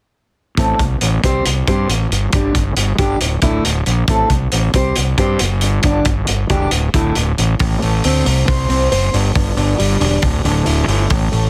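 Quiet-loud alternative rock at 137 BPM in a cathartic, brooding mood, where a dark, boxy fingerpicked parlour acoustic guitar with audible finger squeak plays arpeggios over an up-front, growly fuzz bass and a loose, gritty indie drum kit of hi-hat and punchy kick, all three running from 0.6 to about 11.5 seconds through a dry, heavily compressed radio sound as the chords cycle Am, C5, G5 and Dsus2 before a brief chordless moment at 8.3 seconds in the second section.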